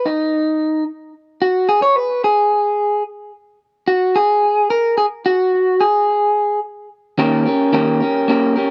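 Indie pop at 109 BPM in a straight 4/4, this lonely, hazy excerpt features a lone electric guitar through a small old amp, picked and compressed, sitting up front with a slightly broken-up edge, colored by vibrato and slapback echo. The guitar plays a clean solo over an unaccompanied opening, ranging from D#3 to C#5, before a D#7 chord arrives at 7.2 seconds and carries the brief closing passage to 8.7 seconds. The sound is dry and open-air, with little reverb and an outdoor feel free of any room.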